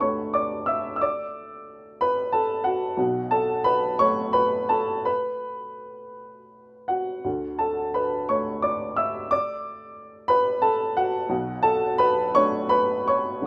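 In a rubato 6/8, this peaceful, intimate fragment of neoclassical minimalist piano drifts slowly through Dadd9, B5 and Bm7 harmonies. A solo upright piano carries everything across its 13.5 seconds, its woody, natural tone placed up front and spanning low bass notes to bright upper register. A short, wet studio reverb surrounds it, and the rough home-demo mix keeps the sound close and unpolished.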